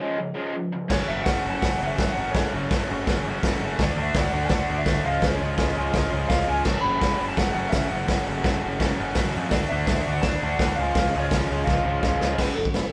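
A raw, swaggering garage rock cut opens with a compressed, slightly broken-up slide guitar melody over a bright, overdriven, double-tracked riff guitar that sits up front, both sounding a C# chord before the bass and drums arrive at 0.9 seconds. From there the band locks in at 167 BPM in straight 4/4 through F# minor, D and C# changes, with a fuzzy, round bass in the background and a gritty, saturated drum kit of punchy kick, medium-tuned snare, hi-hat and crash pumping in a small room. A drum fill at 11.7 seconds leads to a closing F#5 chord, all played live in one room with light reverb.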